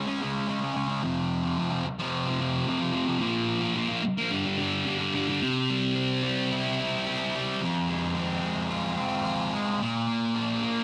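A thick, bright fuzz guitar carries this rock piece by itself, sitting up front with a double-tracked, picked sound soaked in distortion and colored by a phaser. The mood is hypnotic and trippy, moving at a straight 110 BPM in 4/4, with the instrument tuned to A4 = 435 Hz and ranging from F2 to F4. The opening passage runs through power chords on C#5, F5, Bb5 and G5. At 5.4 seconds a second section begins, shifting to C, Fm and Bb. A moderate spring reverb, lasting about 1.7 seconds, gives the guitar a lingering space in this short cut taken from a longer piece.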